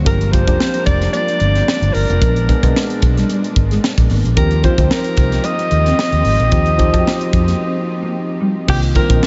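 Polished 1980s jazz-funk pop in Eb major, this upbeat, urban excerpt moves at 111 BPM in 4/4 with a light swing on the sixteenths. A breathy alto saxophone carries the melody in a subtone, jazz-style solo voice with scooped notes, trailed by a diffuse ambient delay. Beneath it, a crisp fusion drum kit sits up front with a punchy kick and high-tuned snare, while a dark, round, foam-muted fingered electric bass anchors the low end. A worn, slightly out-of-tune tine electric piano comps through a combo amp with light overdrive and analog chorus, a very quiet, clean, fingered electric guitar plays a riff, and a lush bowed string section holds sustained chords in the background. The chords move from Gm7 to Bb7b9 to Eb69, with a break from 7.6 to 8.7 seconds before landing on Cm11. The whole mix is dreamy and soaked in a huge ambient reverb, its top end rolled off for a soft, hazy sheen.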